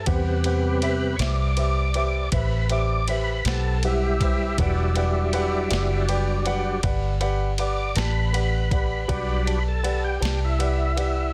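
A dry, dense and heavily limited sound frames this smoky, mournful slow blues in E minor, a brief excerpt at 53 BPM in 12/8, where a smooth tonewheel organ with chorus vibrato and slow rotary speaker takes the solo from 0.0 seconds over sustained Am9 and Em9 chords, a dark, round, foam-muted electric bass sits up front, a polished baby grand piano adds accompaniment, and a gritty sampler-style boom bap kit supplies thumpy kick, medium-tuned snare and ride cymbal.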